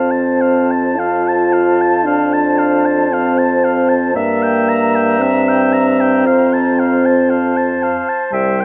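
Tender and unhurried, this brief cut from a slow romantic movement for wind quintet in F major moves at 57 BPM in a rubato 4/4, drifting from F through Edim/G at 4.2 seconds and back to F at 6.3 seconds. A pure, metallic flute with vibrato and a crisp attack carries the melody alongside a clear oboe second line, while a background clarinet and a mellow, roomy French horn, the most prominent voice in the blend, fill in the accompaniment. A soft-attacked bassoon anchors the bass, and the close, detailed miking sits within a moderate scoring-stage reverb.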